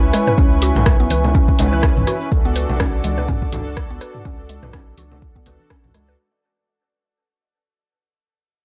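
Afro house at 124 BPM with a swung sixteenth feel, this warm, hypnotic excerpt is a drop fading out over its 6.2 seconds, moving from C#m7 to D at 2.3 s. An up-front, overdriven electronic kick enters at 0.4 s beneath an overdriven deep house kit of cabasa, hi-hat, rim click and toms, both re-recorded in a small room, while band-limited vintage congas sit in the background and a round, deep analog bass pumps with sidechain. Above them, a moody, nasal, detuned pad with a slow attack holds sustained chords, brassy sawtooth synth stabs carry chorus and dub echo, and a woody, warbling FM pluck plays arpeggios with a cassette-tape tint and dub echo, set in a digital ambience.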